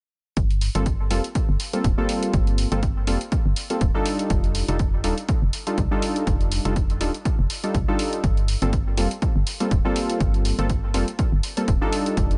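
Deep house at 122 BPM in G minor, hypnotic and smooth, with a lightly swung 16th-note feel. A punchy, tape-warm electronic kick and a tape-warm hi-hat run from 0.4 s under a hollow, dark, organ-like FM bass with tube saturation and sidechain pumping, while up-front detuned sawtooth keys with a filter sweep enter at 0.7 s, playing round, full-bodied stabs through chorus, pumping and dub echo over Gm11 and F13. The mix is dry and dark-topped, and this cut from a longer piece ends at 12.4 s.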